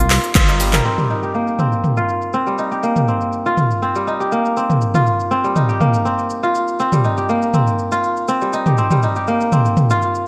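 Bright, 1980s-style digital production bathed in plate reverb frames this driving, earthy afro house excerpt, where a crisp, ringing kora plays up-front arpeggios through a low-pass filter, digital delay and sidechain pumping; a deep house drum kit of handclaps, dark hats, shaker and toms sits up front with gated reverb; a rumbling, detuned saw bass sounds only until 0.8 s; and a layered electronic kick lands on a band accent at 0.4 s.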